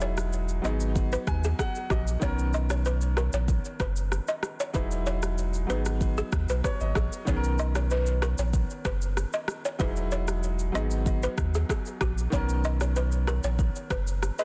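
A straight 4/4 groove at 95 BPM from an electronic, produced afro-pop kit (a deep, tape-warmed kick, rim click, shaker and a softly clipped snare, placed up front) drives this sunny, breezy afrobeats passage in B major, cut from a longer piece, where a round, sine-like sub bass with a fast attack sits forward beneath a woody, buzzing balafon riff played with soft rubber mallets and touched with delay, while a boxy baby grand piano comps through Emaj9, G#m7 and Bmaj9 and adds short fills at 1.0 and 6.3 seconds, all within a dense, heavily limited mix with little reverb.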